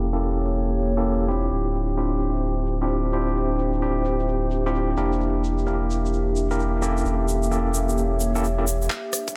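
A skippy, swung two-step UK garage groove bounces through this short cut from a longer piece, as worn, slightly out-of-tune tine electric piano stabs with overdrive and dub echo sit up front over a deep, thick saturated sub bass and a nostalgic, detuned, warbling tape-like pad that pumps with chorus, while a grainy egg shaker joins at 1.5 seconds and, after a filter sweep across the opening, a tight electronic kick and a garage kit of handclaps, hi-hat and rim click arrive at 8.9 seconds for a brief drum fill, all within a light digital ambience.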